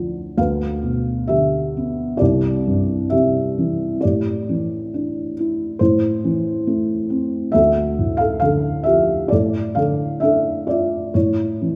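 Reflective and wistful, this brief classical excerpt features a lyrical solo piano moving with rubato freedom at roughly 61-70 BPM in 4/4, cut from a longer piece. The felt-muted upright piano sits up front with a soft, boxy, dark tone, thick felt, short sustain and audible action noise, ranging from C2 to F5 as its harmony drifts from G7/D through Cadd9, Am and Dm to settle on A at 11.1 seconds. A wet recital hall reverb surrounds the intimate instrument, suggesting a church or concert hall.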